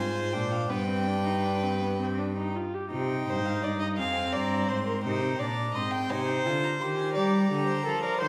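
A serious, solemn baroque-style fugue for string quartet in 6/8, with uneven beats, opens with all four gut-string, period-style players bowing together: a nasal, airy-bowed first violin carries the melody over a reedy, close second violin line, a smooth-topped viola accompaniment and a rich, up-front cello bass, moving from Dm7b5 and G into a passage at 2.9 s that turns through Cm, Fm and Gm, heard from further back in a recital hall with a wet 1.4-second reverb, in a fragment cut from a longer piece.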